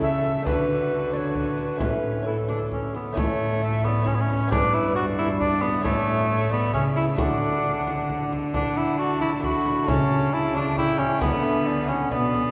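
Heard from further back in a wet cathedral reverb, this courtly, stately renaissance-style consort dance in 3/4 sets an airy tenor recorder melody with a tongued chiff over a mellow cor anglais second line with light vibrato, while a delicate fingerpicked lute accompanies in the background, a rich gut-string cello bows the bass, and a deep frame drum supplies percussion, all playing together through this short excerpt cut from a longer piece.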